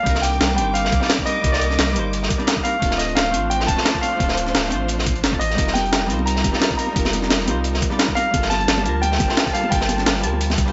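Rolling and lush, this liquid drum and bass excerpt moves at 174 BPM in G minor with a light swing on the sixteenths, cycling through Cm9, Dm7, F9sus4 and Gm9. A bright, brilliant concert grand piano carries the melody high in its register with long sustain and a digital delay, while a dark, clean hollow-body jazz guitar plays picked accompaniment, compressed and roughened by vintage 12-bit sampler grit and its own delay. Behind them, a distant bowed string section holds sustained chords with vibrato and portamento, pumping under sidechain compression. A deep, round sine sub bass anchors the low end, and the drums stack a gritty, compressed sampler-style breakbeat kit with a high-tuned snare, a saturated, mid-forward acoustic breakbeat kit with high-passed hats, snare and room, and a thumpy electronic kick, all three in a small room reverb. Soft-handed congas slip in very quietly at 5.6 seconds, and the whole mix sits in light reverb and studio ambience with a rolled-off top.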